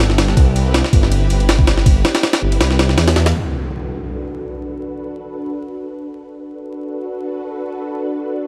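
Vinyl crackle and light digital reverb frame this dark, atmospheric drum and bass cut from a longer jungle piece at 161 BPM, where a gritty, pitched-up sampler-style kit with a thumpy kick, high-tuned snare and ride plays alongside a deep, rumbling detuned saw bass through a Cmaj7 drop until 3.3 seconds. Then an electronic impact hits at 3.4 seconds as a silky, chorused vintage string machine, held softly underneath from the start, sustains a Bm7 chord through a filter sweep to the close.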